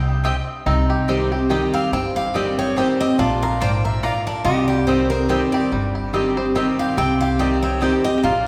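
Bluegrass in C minor at 143 BPM, a rustic and haunting fragment of a longer piece swinging in 3/4, where a twangy, fingerpicked banjo carries the melody from 0.2 s over a bright, jumbo-bodied acoustic guitar accompaniment and a thumpy, gut-strung upright bass, while a nasal, metallic slide resonator guitar hums a background second line, a double-strung mandolin adds woody stabs from further back, and an up-front dreadnought acoustic guitar joins the melody at 1.5 s, all of it bathed in the long reverb of a church or concert hall over a Cm to Bb and back to Cm progression.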